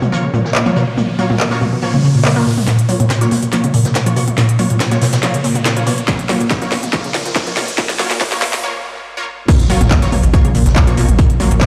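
A straight 4/4 pulse at 141 BPM drives this industrial, peak-time techno cut in Bb phrygian over a Bbm chord, with a punchy, up-front sawtooth unison pluck riff pumping through tube saturation, cassette tape and dub echo, while aggressive, thick rave stabs sweep through chorus, phaser and digital delay. A layered techno kit with a cracking snare, smooth hats, claps, toms and crash drives the build-up and drum fill, a brushed acoustic kit murmurs in the background, and a riser climbs toward a break at 8.6 seconds. A punchy electronic kick arrives at 6.1 seconds, and the drop at 9.5 seconds brings an impact, followed at 9.7 seconds by a deep, round sine sub bass, all soaked in a huge ambient reverb with a faint mains hum.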